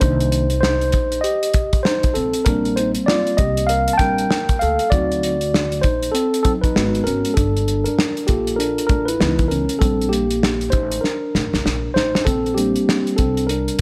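A mellow, clean tine electric piano sits up front through its built-in speakers, soloing across this cool jazz-hop excerpt in Bb major at 98 BPM with a 16th-note swing, moving through chords such as Cm7, Bb69, D7b9, Abm9 and Dbm7. Beneath it, a woody, growly pizzicato upright bass on steel strings holds the low end. A cloth-damped, thuddy drum kit with a tight kick, medium-tuned snare, hi-hat and rolled-off top plays up front in a small room, with a fill from 11.0 to 12.3 seconds leading into a brief new section, all set in light studio reverb.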